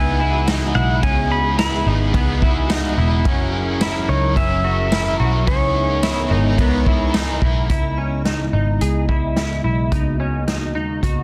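Hazy and ethereal, this dream pop fragment sets a twangy, fingerpicked pedal steel melody, bright with volume swells, slide and digital delay, over a biting, double-tracked overdriven guitar coated in harmonic tremolo and lush chorus, both dropping away by about 7.7 seconds. A hollow, flute-like soft pad and a clean, hollow-body semi-hollow electric guitar playing chorused, delayed arpeggios sustain throughout, while a dark, foam-muted vintage picked bass and a punchy, rolled-off vintage drum kit with ride, hi-hat and tambourine entering at 0.5 seconds anchor the groove. A faint, sparkling granular texture with octave-up shimmer twinkles in the background as the chords drift from C#m7 through F#7 to a closing G#m9/C#, all within a dense, heavily limited modern master.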